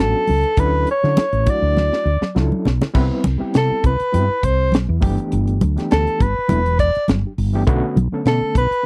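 Electric jazz fusion with a soaring, slick feel, moving in 4/4 with a light swing on the sixteenths, in this short clip cut from a longer piece. A breathy soprano saxophone carries the melody with a subtone, whispered quality and light vibrato, sitting up front and intimate before taking a solo from 3.0 seconds to the end. Beneath it, an overdriven reed electric piano supplies gritty accompaniment through a combo amp, colored by a fast tremolo. A woody fretless electric bass anchors the low end with a growly, round, punchy tone, while a tight funk drum kit, dark and smooth with a high-tuned snare, enters at 0.3 seconds alongside bright, thin-skinned congas. A drum fill from 1.8 to 3.0 seconds leads into the solo section, where the harmony moves through lush ninth and major seventh chords. The sound is dry and close, in the manner of a 1970s studio recording.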